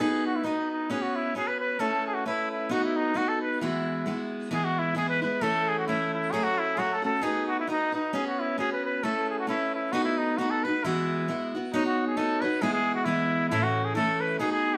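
Cheerful and bright, this brief Celtic folk excerpt in E major moves at 133 BPM in a lightly swung 2/4, with a nasal, straight-muted trumpet carrying the melody up front with light vibrato and a soft, classical-style attack over picked steel-string acoustic guitar whose fresh strings and finger squeak sit close in a moderate studio reverb, the chords cycling through B, Aadd9 and Eadd9 before a closing turn from Badd9 to E and A at 11.7 seconds.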